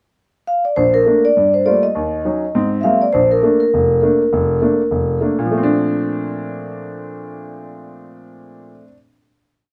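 A relaxed, swinging jazz piece in which a vibraphone, played with medium mallets and the motor off, carries a motif-based melody in sentence-like phrases, its tone dark, metallic and ringing, placed up front from 0.5 s to 5.2 s. A smooth, vintage-sounding grand piano accompanies from 0.8 s to 8.9 s with a stride bass and close voicings, also placed up front and sounding alone through the closing chord. Light reverb gives the pair a gentle sense of space.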